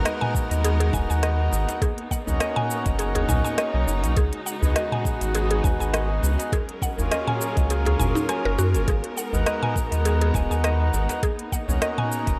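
An echo-heavy, lightly reverberant mix carries this meditative organic downtempo excerpt at 102 BPM in G# dorian: a round, deep analog bass with sidechain pumping sits up front beside a soft, tape-warm electronic kick, while a reedy, breathing pedal harmonium, washed in dub echo, and a clear, lush bowed string section hold pumping chords; a woody FM mallet-like pluck spins chorused, dub-echoed arpeggios over a crisp-hatted organic electronic kit of hi-hat, rim click, shaker and toms, and a very quiet, hard-handed djembe joins at 0.9 seconds.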